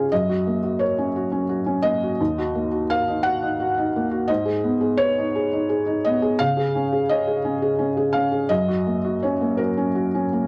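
Set in a lilting 6/8 that breathes freely with rubato, this short passage from a longer neoclassical minimalist piano piece feels intimate and wistful. A single felt-muted upright piano plays alone for the whole 10.5 seconds. Its soft, mellow voice sits up front, and the noise of the action stays audible. The harmony moves gently through F#, D#m, G#m and C# before settling back on F# at 8.5 seconds. Light reverb surrounds the piano, and a worn, cassette-like tape quality adds a warbling pitch drift that gives the sound a faded, nostalgic cast.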